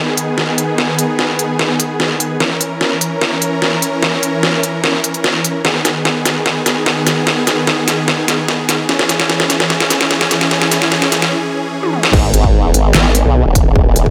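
Moving in a half-time 4/4 feel at 148 BPM in G# minor, this heavy, chaotic wobble dubstep excerpt from a longer piece builds for 12.1 seconds on huge, lush supersaw chords with sidechain pumping and a low-pass filter over G#m, A#dim and C#m while a tape-toned drum kit with a deep snare, crisp hats, handclaps, toms and crash cymbal fills alongside them, then after a short break the drop lands at 12.1 seconds, bringing in a punchy electronic kick and an up-front, overdriven, chorused formant-sweep wobble bass of detuned sawtooth and sine.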